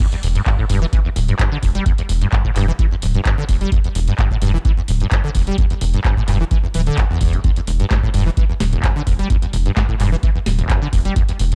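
A dry, gritty hardware sound with transformer saturation and a cassette-tape haze frames this short acid house clip, cut from a longer piece and set in a digital ambience. At 129 BPM in 4/4 with a light 53% swing on the sixteenths, the mood is hypnotic and trippy, hovering over a rootless Dsus4 harmony for its full 11.6 seconds. An up-front electronic kick drum, deep and analog, drives the groove alongside a booming analog drum machine supplying crash cymbal, handclaps, metallic hi-hats and a tonal snare. The sawtooth acid bass riff sits up front, squelchy and resonant with a fast, plucked filter attack that decays, ranging from E1 to G3 and treated with ensemble chorus, tape echo and sidechain pumping. Beneath it, a thick, saturated sine sub bass enters at 0.2 seconds and sustains between D1 and E1, pumping against the kick.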